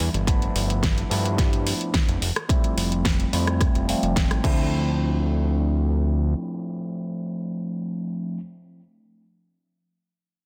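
A gritty, barky tine electric piano, overdriven through a combo amp and sitting up front, carries this short nu-disco excerpt in D dorian at 108 BPM. It plays chords through phaser, sidechain pumping and digital delay, moving from G13 to Fmaj9 to Dm7, and it is the last part sounding, ringing on until 8.4 seconds. Beneath it, a fat analog bass with a thick, detuned sawtooth tone and a filter sweep holds the low end until 6.3 seconds. The opening drop is driven by a punchy, layered electronic kick entering at 0.3 seconds, alongside a produced pop kit with a fat snare, metallic hi-hats, rim clicks and crash cymbal, and both drum parts stop at 4.6 seconds as the music moves into a new section. The mood is cosmic and sensual, framed by light reverb and a dense, heavily limited modern master.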